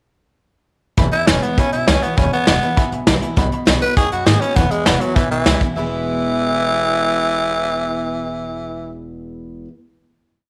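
Upbeat and rowdy, this short rockabilly piece in E major drives along at 200 BPM. A raspy, growling tenor saxophone with slapback echo sits up front with a lick-based theme that returns, over a vintage brush kit playing a shuffle groove until 5.7 seconds, a thumpy upright bass playing a quarter-note figure, and a full-bodied jumbo acoustic guitar alternating bass notes and strums. In the background a mellow upright piano with audible action noise plays eighth-note triads, adding a fill at 2.8 seconds, as the chords move from E to B7 and back before a final chord at 5.8 seconds, all in a moderate plate reverb.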